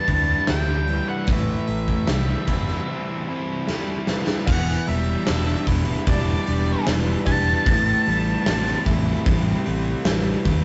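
A rough rehearsal-room sound, with warm saturation, a dulled top end and a moderate stone-room reverb, frames this brooding, hazy slice of shoegaze and dream pop rock, cut from a longer piece and moving at a slow 75 BPM in 4/4 in E minor. A gated 80s drum kit sits up front, with bright cymbals, a medium-tuned snare and a tight kick in an airy, polished room sound. A break runs from 2.9 to 4.5 seconds, and within it the drums play a fill from 3.7 to 4.5 seconds, leading into the second section. Beneath it, a round, foam-muted fingered bass holds the low end, while an overdriven electric guitar and a dark, thick fuzz guitar in the background grind out riffs over the Em7 and Am7 changes. A very quiet twelve-string electric guitar adds clean, twangy, compressed arpeggios. Over the top, a murky octave-fuzz lead guitar carries the melody until 8.8 seconds.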